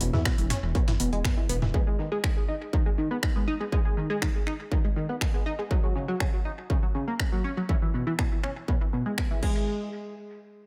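A straight 4/4 pulse at 121 BPM drives this melancholic, dramatic melodic techno excerpt, with a distorted electronic kick sitting up front from 0.3 seconds. Around it, a deep house drum kit adds metallic hi-hats, finger snaps, toms and a crash cymbal, its tape-tinged sound trailing dub echo. A gritty, overdriven sampler-style kit with high-passed snare and hats sits in the background, and a rumbling, detuned saw bass with tube saturation and sidechain pumping plays between E1 and E2; both stop at 1.7 seconds. Carrying the music is a tight, driving sequenced synth playing arpeggios, its wave-folded, filter-plucked tone colored by chorus, phaser, analog delay and sidechain pumping. The harmony moves from E5 to G#5, then F#5 and back to E5, set in a lightly reverberant, echo-heavy mix.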